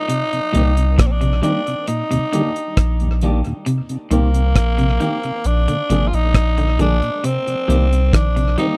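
Dry and close in a 1970s studio style, this meditative roots reggae excerpt circles hypnotically over Cm7, Ebmaj7 and Bb7, anchored by a deep, round sub bass and a damped acoustic drum kit with a tight kick, hi-hat and rim click, both sitting up front. One slightly broken-up electric guitar picks compressed arpeggios while a second, twangier guitar comps with spring reverb and tape echo, and a dark, clean tonewheel organ with key click, chorus vibrato and a slow rotary speaker hums in the background. Over it all, a raspy, gritty tenor saxophone carries the melody with light vibrato and a touch of tape echo, punchy and present throughout.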